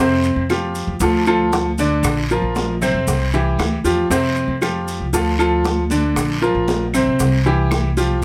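Latin Cuban son and guajira with a danceable mood, this fragment of a longer piece features an up-front, brilliant baby grand piano playing long-sustaining arpeggios over a growly, thumpy pizzicato upright bass. Tight, hard-hand bongos and raspy guiro join distant high-tuned congas, grainy maracas and compressed, woody claves, the latter three sitting in the background, all under light reverb across a repeating Fsus2, Dm, Bb, C progression.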